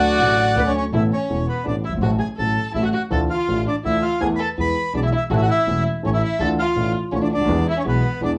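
A rubato tango in 3/4 at 165 BPM, this short excerpt in A major feels passionate and nostalgic as it moves from D through Aadd9, F#m/A and Dmadd9 to an Esus4 that settles onto E. An up-front, reedy bandoneon carries the melody while a single bowed violin adds a second line with vibrato, portamento and a soft attack. Beneath them, a worn, present baby grand piano with long sustain provides accompaniment and a pizzicato upright bass on gut strings gives a woody, thumpy low end, all captured as a band playing live in one room with moderate studio ambience.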